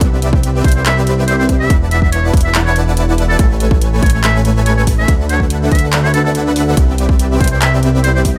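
A huge, detuned supersaw riff and a fat, wave-folded analog bass both pump from the start alongside a hard-clipped, up-front kick and an overdriven trap kit of handclaps, bright hats and ride in this lush, euphoric half-time future bass excerpt, with a buzzy metal-muted trumpet entering at 0.6 seconds to play a jazz-style melody with scooped notes and light vibrato, carrying 12-bit sampler grit and tape echo over chords moving from Cmaj7 through E7sus4, Amaj7 and D6, all set in a digital ambience.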